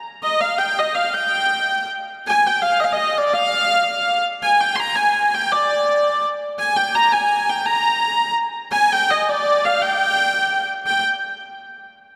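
A lone hurdy-gurdy enters at 0.2 seconds, its smooth, even, wheel-bowed tone sitting close and up front as it plays in 6/8 in the high register until 11.0 seconds. This brief medieval excerpt feels ancient and mysterious, with the pace speeding up throughout and the instrument bathed in a wet church reverb.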